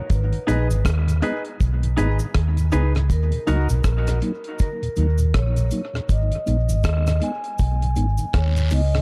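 A round, punchy, foam-muted electric bass sits up front in this deep, meditative dub reggae excerpt, alongside a dry, deep drum kit with a tight kick, hi-hat and rim click, and a swung sixteenth-note feel. Soft-mallet vibraphone carries a ringing melody through dub echo over a mellow, flute-like tonewheel organ with chorus vibrato and key click, while a faint layer of cabasa and guiro adds texture. From 0.5 to 3.7 seconds, a bright, clean semi-hollow guitar and worn, woody, slightly detuned upright piano stabs echo briefly through the dark, nearly dry production.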